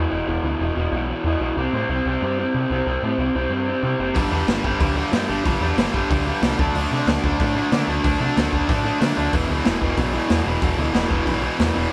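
A straight 4/4 pulse at 186 BPM drives this energetic, upbeat punk rock excerpt, which opens with a lo-fi, overdriven garage guitar riff over a growling, round and dark picked bass on power chords moving from E5 through C5, G5 and D5, before a bright, tight distorted guitar joins at 4.1 seconds and a gritty, saturated garage drum kit with a punchy kick, medium-tuned snare, hi-hat and rolled-off top enters at 4.2 seconds, the band sounding as if it is playing live together in one room with light reverb.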